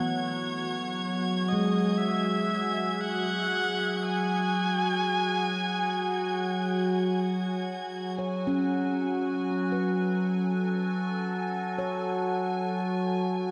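Ambient and serene in free time, this spacious excerpt sets a rich electric violin melody with smooth portamento and tape echo over an evolving, warbling wavetable pad with phaser, ringing handpan arpeggios, a barely audible organ-like drone and a warm chamber violin section played sul tasto, all bathed in a vast cathedral reverb, with the lead violin ending at 7.6 seconds as the harmony moves from E to F# minor at 8.2 seconds.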